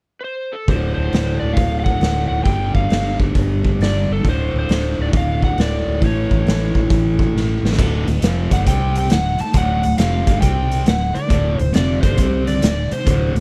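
A dry, close-sounding fragment of swaggering, driving blues rock and southern rock at 136 BPM with a swung eighth-note feel, built around D7, G5, D5, A and C5 chords. An overdriven slide guitar played with fingerpicks carries the melody, briefly alone before the band arrives at 0.7 seconds: a double-tracked, distorted rhythm guitar riffs up front, a round, foam-muted vintage bass sits underneath, and a gritty, saturated garage drum kit with a punchy kick pumps in a stone room. A drum fill at 7.3 seconds leads into the next section, where a dark, slightly broken-up lead guitar adds a very quiet second line from 8.6 seconds.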